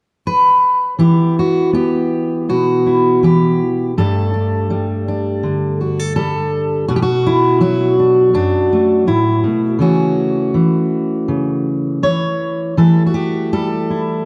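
The recording has a dark production, with a moderate large-studio reverb that lets each chord hang for more than a second in the room. A single fingerpicked steel-string acoustic guitar, a jumbo-bodied instrument with fresh strings, sits up front and sounds full-bodied and warm as it carries this haunting, melancholic folk piece alone. It enters at 0.3 seconds, and from 1.0 seconds it moves at an unhurried 81 BPM in straight 4/4 through Emadd9, Gsus2, Bm7 and A/C# before settling on Em. Its range spans F#2 to C#5. The tuning sits slightly above standard pitch, at A4 = 445 Hz. This short section is cut from a longer piece and closes at 14.3 seconds.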